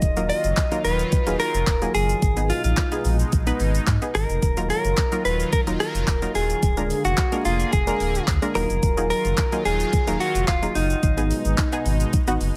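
A clean, picked electric guitar, recorded direct and up front with digital delay, carries the melody over a driving, energetic dance-pop groove at 109 BPM in Eb harmonic minor, backed by punchy sawtooth chord stabs with chorus, an airy, evolving detuned pad with sidechain pumping, a deep sine-and-triangle sub bass that also pumps, an overdriven electronic pop kit with a knocking kick, hi-hat, shaker and claps, and a very quiet, crisp group handclap from 0.6 to 11.7 seconds, all cycling through Ebmadd9, Abm and Bb7/D in light reverb.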